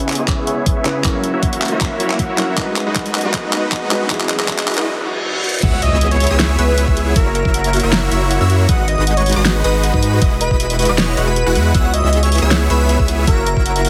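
Future bass at 157 BPM with a half-time, lightly swung feel, this lush, dreamy excerpt opens on a build-up of felt-muted upright piano with audible action noise and gritty sampler texture, a faint ethereal pad, thumb-plucked Celtic harp arpeggios, huge detuned supersaw chords under a filter sweep, and an overdriven pop kit with fat snare and handclaps over a knocking kick, rising through a quiet riser and reverse cymbal into a drop at 5.6 seconds where a dreamy chorused lead carries the melody over a punchy phased pluck and a deep saturated sub bass, all pumping against the kick through a heavily compressed, radio-like sound.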